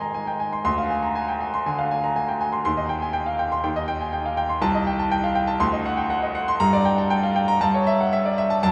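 Awash in a cathedral reverb that trails for about 7.1 seconds, this church or concert-hall recording has a soft, rolled-off top end. A bright, brilliant grand piano sits up front with natural tone and long sustain, playing a passionate, agitated virtuoso study in C minor at 120 BPM in 4/4, pulled about with rubato across a range from C2 to C6. Cut from a longer piece, the brief passage moves through shadowed harmonies such as Dm7b5 and D7b9 before reaching Gm, with the tuning set slightly high at A4 = 441 Hz.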